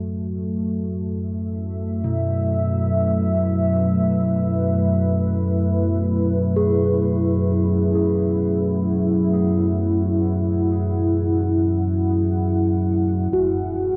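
Dark and ominous, this free-flowing dark ambient drone sets a rumbling, wave-folded synth drone under a filter sweep beside a deep, chorused sawtooth pad of sustained chords, while a pure, mellow quartz singing bowl rings softly in the background, a metallic bronze singing bowl plays vintage, tape-echoed arpeggios from 2.0 to 12.1 seconds, and a huge but very quiet impact lands at 13.3 seconds, all bathed in vast reverb and the warbly pitch drift of worn cassette tape.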